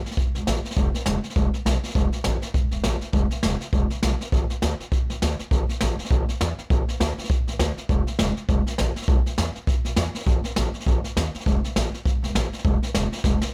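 A dry, close-up recording with little reverb captures an upright bass and a brushed drum kit, both up front, in this rowdy, upbeat rockabilly excerpt at 202 BPM with a swung feel. The plucked bass on gut strings sounds woody, dark and thumpy in its low register, while the kit pairs a medium-tuned snare and a boomy kick with hi-hat, all played with brushes in a natural studio room. Both parts run together from the start, and a drum fill arrives at 13.2 seconds just before the cut.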